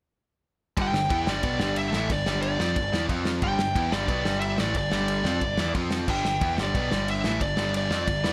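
A straight 4/4 punk rock pulse drives this upbeat, energetic clip at 181 BPM in G major, with a loose indie drum kit of tight kick, medium-tuned snare, ride and crash playing from 0.8 to 8.3 seconds alongside everything else. Up front, a smooth overdriven lead guitar carries the melody with tape echo, while a compressed overdriven guitar and a dark, sludgy distorted guitar in the background drive the riff over a growling, bright picked bass. The chords move between G and F5 in a moderate small room, and the piece is cut from a longer work.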